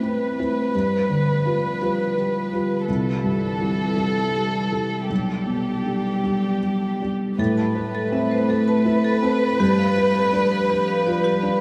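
Drenched in a huge ambient reverb that places it in a vast, echoing space, this short cut from a longer neoclassical piano-and-strings piece moves in a rubato 6/8 at about 52-56 BPM, with a longing, melancholic mood over chords such as Amadd9, G7 and C6. Up front, a felt-muted upright piano gives mellow, intimate accompaniment with audible action noise, while a chamber violin section carries the melody with vibrato and soft sul tasto bowing. Behind them, a single cello adds a warm second line colored by tape echo, and at 7.4 s a bright, airy marimba played with hard mallets enters with percussive arpeggios.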